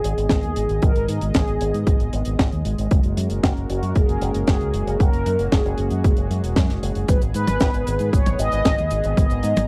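A dry, close 1970s-style studio sound frames this melodramatic, nostalgic italo disco clip, where a round, brassy, detuned synth brass melody with chorus, tape echo and cassette-tape grit floats over a dark, smooth sawtooth pad with a sub octave and slow attack, a bright, punchy fingered bass shaped by an envelope filter sits up front, a tight acoustic funk kit with a high-tuned snare, hi-hat, cabasa and toms plays in a small room, and an overdriven, layered electronic kick punches through from 0.3 to 9.3 seconds as the chords move from G#m to F#add9 and back.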